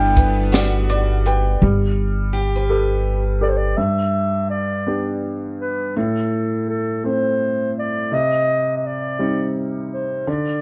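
A dark, distant clarinet sings a nostalgic, intimate folk melody in 6/8 over a worn, boxy grand piano, joined at the start by a sul tasto chamber string section in the background, a picked ladder-braced acoustic guitar with finger squeak and a growly, woody pizzicato upright bass, while a dry cocktail drum kit with a punchy kick and high-tuned snare enters at 0.2 seconds for a short spell, and after the bass stops at 3.7 seconds the clarinet and piano carry on together to 10.6 seconds through chords that shift from G to A minor and C minor.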